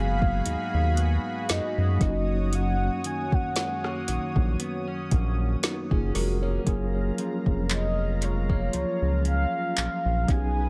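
A slow 4/4 groove with a light sixteenth-note swing carries this moody, sensual contemporary R&B fragment, where an up-front electronic kit with soft kick, woody snare, metallic hi-hat, handclaps and rim clicks joins at 0.2 s over a deep, round analog bass mixing sawtooth and sine with ring modulation, while a clean tine electric piano and a dark, fingered electric guitar playing compressed arpeggios, both touched with analog delay, sit beneath a lush, detuned, bright unison pad with chorus and a vintage horn-like synth lead that warbles with vibrato through chorus and delay, all in a dry, echo-heavy mix that shifts to a new section and a major-seventh chord at 6.7 s.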